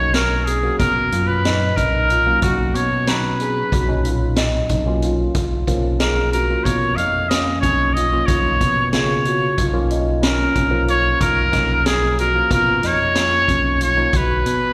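Driving and bright, this progressive instrumental excerpt moves at 184 BPM in 9/8 in B lydian, resting on a Bmaj7 chord as a clear, up-front trumpet sings the melody with light vibrato and scooped notes over a worn, slightly out-of-tune tine electric piano colored by overdrive and phaser, dark, intimate baby grand arpeggios with audible action noise, a bright fingered electric bass and a street-band drum kit with a high-tuned snare and boomy kick, all heard as a live gig through the venue's PA with recital hall reverb.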